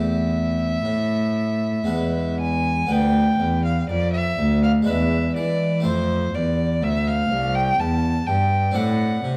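A rich, focused solo violin with vibrato carries the melody over an airy, full-bodied Flemish-style harpsichord and a bowed solo cello with vibrato on the bass line in this introspective, flowing fragment of a baroque-style sonata movement in triple time, set in a moderate recital hall with a dark production.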